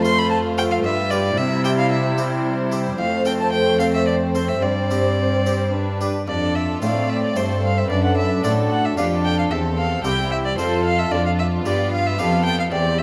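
From the first beat, a lively, festive baroque-style concerto passage in 3/4 at 112 BPM sets a focused, up-front solo violin singing high over a hushed, sul tasto chamber violin section on the melody. Beneath them, a woody, dark second violin section carries a second line, a bright Italian-style harpsichord plucks its accompaniment, a rich but distant viola section fills the middle, and a lush, warm cello section sits up front on the bass. The whole ensemble blooms in a recital-hall reverb as the harmony moves from F through G7 and C, in an excerpt that stops after 13.0 seconds.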